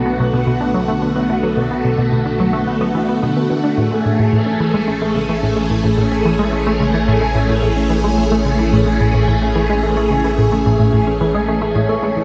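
Swirling, bright phased string machine chords open this expansive, cosmic stretch of sequencer-driven ambient space music, joined at once by a hollow, bouncy square-wave pluck riff coloured by cassette tape and analog delay, a deep, round analog bass fading in and a very quiet pulsing gated texture, while metallic, ringing vibraphone arpeggios fade in from 0.1 s in the background, set within a dark, lush hall reverb as the harmony moves from Bm7 to Amaj7 at 3.8 s.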